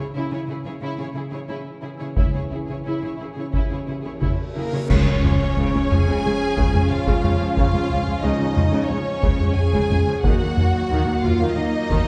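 Lush, vibrato-laden violins carry the melody over a second violin line, smooth violas, close and expressive cellos and backgrounded French horn chords in the C#m opening of this adventurous, triumphant epic orchestral film cue at 90 BPM, before soft-attack double basses, heavy-stick taiko, dark clash cymbals with a cymbal swell, and concert bass drum arrive at 2.2 s, and a reverse cymbal leads into a huge, bright impact, a round soft-mallet timpani stroke and clear trombone chords as the music lands in Db major at 4.9 s, the orchestra heard from further back in a reverberant scoring stage.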